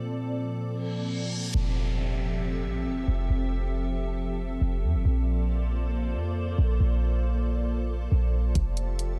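A glassy, ethereal FM pad opens this excerpt of atmospheric cloud-rap, holding sustained Bbmaj7 and Fmaj7 chords with a slow attack, a vintage warble from ensemble chorus, its own reverb, and a sidechain pumping effect. The mood is dreamy and blissful, moving at 137 BPM in a half-time 4/4 feel in F major. Early on, an electronic reverse cymbal and downlifter sweep through. At 1.5 seconds a clean, sine-like 808-style bass arrives up front, deep and boomy with a fast attack and dark decaying tail. A smooth, tape-warm R&B drum kit enters only at 8.6 seconds, giving a brief touch of soft kick and hi-hat. The room sound is dry, keeping the bass and pad close and present.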